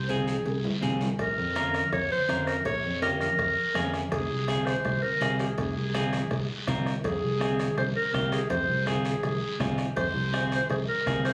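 Caught on a phone in the room, this short cut from a longer cumbia has the light reverb of a club around it. At 164 BPM in F minor, the mood is danceable and passionate. A jazz-style clarinet sits up front as the solo voice, its tone warm and smooth on top, with vibrato and scooped notes. A growly, punchy fingered electric bass anchors the low end, while a bright, twangy electric guitar, picked and slightly broken-up, fills in the middle. Behind them, raspy guiro, ringing cowbell and timbales, and very quiet, distant low-tuned congas with a thick-skinned tone keep the groove; a drum fill at 0.5 s leads to the soft-beater bombo entering at 1.2 s as the harmony moves from Fm to Bbm, returning to Fm at 4.1 s.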